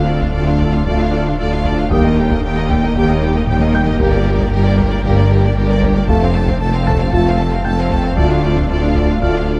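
A dark, warm production with light reverb opens this brooding, tense passage of hybrid orchestral and electronic film score, cut from a longer piece and moving at a straight 115 BPM in 4/4 in G minor. A lush symphonic violin section carries the bowed melody with focused vibrato, shadowed in the background by a rich studio violin section on a second line, while a soft-attacked, expressive viola section fills in the accompaniment. The low end is heavy: a bowed double bass section, a very quiet, even cello section, a mellow solo tuba and a deep, punchy sine sub bass with a pitch-drop attack all hold the bass beneath a swarming, detuned granular drone that sustains chords with its own built-in reverb. A close, dry taiko ensemble struck with heavy sticks enters at 0.2 seconds and plays a fill from 3.5 to 4.0 seconds, and a loose French horn section adds sustained chords from 0.9 seconds. From 1.9 seconds a soft, intimate felt-muted upright piano adds high texture in the background as the harmony moves through D minor, E-flat, G minor and F before returning to D minor.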